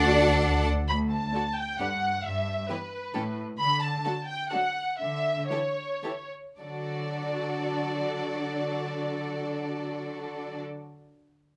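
Lively and cheerful, this brief cut from a quick classical-period movement for string orchestra in 3/4 gives the melody to a lush, up-front violin section with vibrato over a bright second violin line, a close viola accompaniment and a rich, smooth cello bass, while the double basses sound only a soft-attacked, portamento D for the first 0.6 seconds, the music slows between 2.9 and 6.6 seconds, and light reverb surrounds the bowed ensemble.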